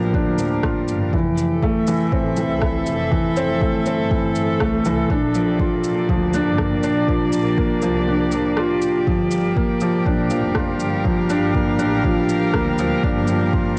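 Piano and strings electronica with an intimate, melancholic mood, built on a riff from a soft, felt-muted upright piano sitting up front with audible action noise, cassette tape colour and analog delay, alongside sustained chords from a bright, intense string quartet with sidechain pumping, a lush, bowed double bass section that also pumps, an overdriven deep electronic kick, and an electronic shaker and rim click, all captured as a home cassette recording in a modest booth.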